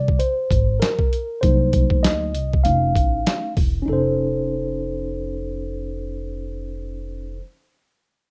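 Swung sixteenths in 4/4 drive this smoky, nocturnal jazz-hop fragment, with a gritty, pitched-down boom bap kit of thumpy kick, medium-tuned snare and hi-hat sitting up front until it stops at 3.7 seconds. A mellow, clean tine electric piano takes a solo through the first 3.9 seconds and carries on over chords like Abadd9 and F7b13, heard as if through its own built-in speakers. A woody, pizzicato upright bass on steel strings anchors the low end, all within a moderate studio reverb and a rough home demo mix.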